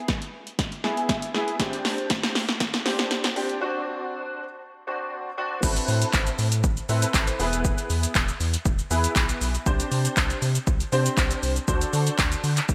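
Driving and energetic, this dance-pop excerpt at 119 BPM in A dorian opens with an intimate concert grand piano, treated with ensemble chorus and sidechain pumping and carrying audible action noise, alongside a punchy analog drum machine with gated reverb, playing kick, snare, handclaps, hi-hat, shaker and crash. It builds through a drum fill, a piano fill, a filter sweep and a break over E, Csus2 and D7 until a round, dark analog bass with sidechain pumping enters at 5.6 seconds for the drop on Amadd9, all set in a lush hall reverb with bright 1980s-style digital sheen.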